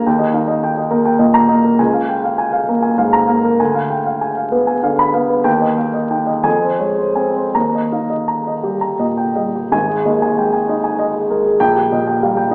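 A rubato 6/8 lilt, drifting between 52 and 74 BPM in dotted quarters, carries this hopeful romantic character piece for a solo upright piano, woody and up front, that opens on Eb and passes through Bbm7/Db, Ddim7 and Fm before a new section arrives at 9.7 seconds on Ab5 and settles toward Eb/Bb, heard from further back in a reverberant recital hall with vinyl crackle and an AM radio sound in this short, warm passage cut from a longer piece.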